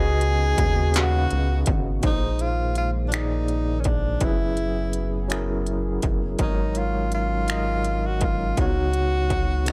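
A breathy tenor saxophone with vibrato and scooped notes carries a tender, jazz-style melody up front over a barky, overdriven electric piano with fast tremolo, a shimmering, very quiet chorused pad and a rubbery, hollow square bass, while an industrial drum kit with a distorted kick, clanging snare, smooth hi-hat and finger snaps enters at 0.2 seconds in this intimate, dry and gritty fragment of slow six-eight R&B at 55 BPM, moving through suspended ninth chords from Db9sus4 to Bb9sus4 at 2.0 seconds and returning to Db9sus4 at 8.6 seconds.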